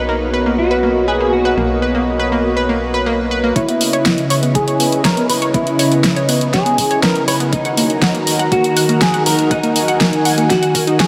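Progressive house with a bittersweet, driving mood, this short cut from a longer piece is bathed in a huge ambient reverb that gives the mix a dreamy, soaked feel. A dark, clean semi-hollow electric guitar carries the melody through ensemble chorus, a low-pass filter and delay, while a smooth, detuned analog pad holds sustained chords with a mellow sub-octave glow, chorus and sidechain pumping. Over them, an analog pluck spins round, warbling, vintage-flavoured arpeggios that still sound bright, treated with chorus, delay and pumping. In the opening, a tight, punchy, nasal sequencer bass pulses under a filter sweep on the pad until 3.5 seconds. At 3.6 seconds a build-up begins as an overdriven electronic kick with a knocking tone enters together with a pop drum kit up front, its fat snare and hi-hats also overdriven and re-recorded in a small room. A filter sweep on the guitar runs through this second passage.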